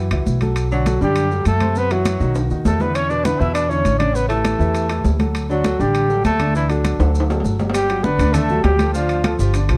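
Sunny and danceable, this Afro-Cuban jazz excerpt moves at a brisk 200 BPM in D major, with a woody, growly pizzicato upright bass up front and a warm grand piano with long sustain comping beneath bright, hard-hand congas in the background, ringing metal-shell timbales and grainy maracas. From 0.7 seconds a breathy trumpet carries the melody up front with scooped notes and a smooth top, while a clear tenor saxophone with soft attack and vibrato traces a second line further back. Fills at 2.4 and 7.0 seconds punctuate the groove before the harmony shifts to a Gmaj9, and the whole sits in a dark production with moderate studio reverb.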